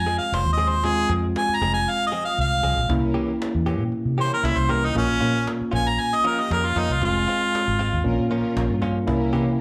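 Soulful and mournful, this straight-eighth soul blues in F minor at 117 BPM, cut from a longer piece and heard as a live club gig through the venue's PA, features an up-front, bright harmonica solo with overdrive, slapback echo, light vibrato and scooped notes, over a barky combo-amped tine electric piano, a round, foam-muted vintage fingered bass, twangy clean direct-recorded guitar stabs, and a woody, compressed cajon in the background, while a lush, dark symphonic string section with portamento enters beneath them from 2.9 seconds.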